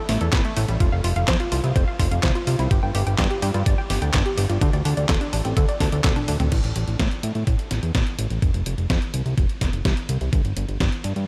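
A lightly reverberant, nostalgic italo disco excerpt at 126 BPM, where a fat, detuned, wave-folded analog bass sits up front beneath a round, chorused analog pluck playing arpeggios until 6.5 s, while a thumpy overdriven electronic kick and a detuned 8-bit drum machine with crash, handclaps, hi-hat, snare and toms keep it danceable, with a drum fill leading into the turn at 6.5 s.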